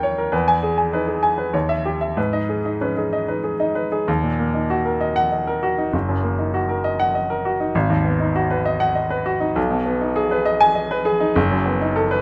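Classical virtuoso piano study in 3/4 at 99 BPM, played with rubato and a stormy, passionate mood, opening in G# minor and moving to Eb minor at 4.1 s. A clear, natural baby grand piano plays solo and up front across a span from Gb1 to G#5, its notes carrying a short sustain, with harmony passing through chords such as D#7b9, Abm7 and B7/F#. Light reverb surrounds this brief cut from a longer piece, and the instrument is tuned slightly high to A4 = 444 Hz.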